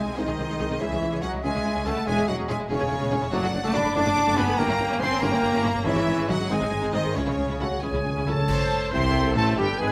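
In a straight 6/8 at 94 BPM, this restless, stormy orchestral passage in C# minor, cut from a longer piece, carries a focused, lush violin melody over a background violin line, a mellow clarinet, airy flutes, rich violas, warm distant horn chords, and a bass of intense cellos, woody double basses and a roomy tuba. Timpani fill from 7.2 s before dark clash cymbals with bass drum strike at 8.5 s and clear trumpet stabs enter at 8.9 s over a shift to A minor, all in a moderate scoring-stage reverb.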